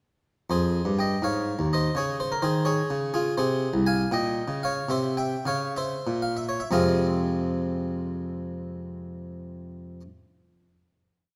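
In a flowing, rubato 6/8 at 59 to 86 BPM in dotted quarters, this grave baroque-style suite movement in F minor has a solo harpsichord with a round, plucked French-style tone on one set of strings, playing a tune in thirds over a walking bass that slows from 2.6 to 6.7 seconds and comes to rest on a sustained F minor chord, heard up front through close, detailed microphones in a moderate concert hall reverb.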